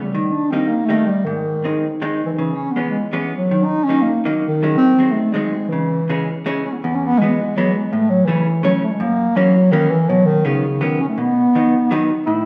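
A brisk, straight 3/4 pulse at 164 BPM drives this nostalgic, whirling musette, cut from a longer piece and tuned to A4 = 439 Hz. A dark bass clarinet carries the melody from the opening, sung with vibrato in a jazz style, roomy and distant in character yet placed up front. Beside it, a vintage hollow-body electric guitar supplies accompaniment from 0.1 s, its picked tone clean and compressed, moving through chords such as C#m7, D#m and a G#7sus4 resolving to G#7. The music begins in C# minor and brightens into E major at 6.8 s, where the harmony opens onto Eadd9, A, F#7 and Badd9 before settling on B. A recital hall reverb with a 1.5-second decay surrounds the duo, lending the pairing a lingering, spacious bloom.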